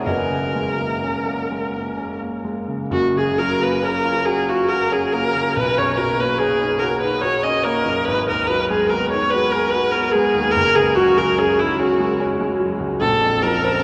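A single bowed viola leads with a rich, smooth melody sung with vibrato, floating over an intimate grand piano whose action noise can be heard beneath its chords. This luminous, dreamy impressionist duo moves in a loose, rubato 6/8, drifting through added-tone and seventh harmonies such as Bmaj9 and G#m7. The whole passage sits in a cavernous cathedral reverb and carries the worn, warbling pitch drift of old cassette tape, lending it a hazy, faded quality as it is cut from a longer piece.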